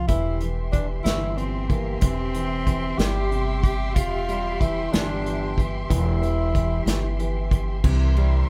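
A breathy tenor saxophone sings a mellow, scooped melody with light vibrato over clear grand piano and a woody, thumpy pizzicato upright bass in this romantic, heartfelt six-eight pop ballad fragment, as distant, lush bowed strings and an up-front drum kit with dark cymbals and bundle sticks join almost at once, and a full-bodied fingerpicked steel-string guitar slips in with arpeggios at 7.8 s, all in the light reverb of a band playing live in one room.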